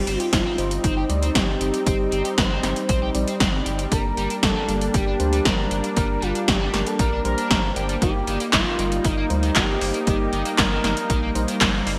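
Driving and moody, this synthwave excerpt carries a smooth, expressive sawtooth lead with vibrato, cassette-tape grain, subtle chorus and delay over a detuned, slow-attack analog pad with sidechain pumping and a dreamy, warbling FM electric piano with a soft pad layer tucked in the background. Underneath sit a picked, double-tracked overdriven guitar riff with chorus and delay, a round, deep analog bass with tube saturation, up-front 80s pad drums with gated snare, metallic hats and handclaps, and a punchy, overdriven electronic kick. The bright 1980s-style digital production sits in a lush hall reverb as the chords move from Cm/G to Gm at 3.9 seconds and Eb/G at 8.0 seconds.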